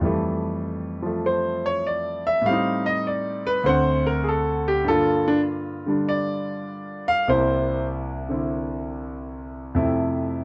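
A clear, up-front concert grand piano plays alone through this cool, late-night solo jazz excerpt at 99 BPM in 4/4, its swung eighths loosened by rubato as it ranges from a deep bass at C2 up to F#5 over a progression moving from Fmaj9 through Am7b5, D7, Gm7 and C7 to settle on Fmaj7 at 9.7 seconds, all in a natural sound with light reverb.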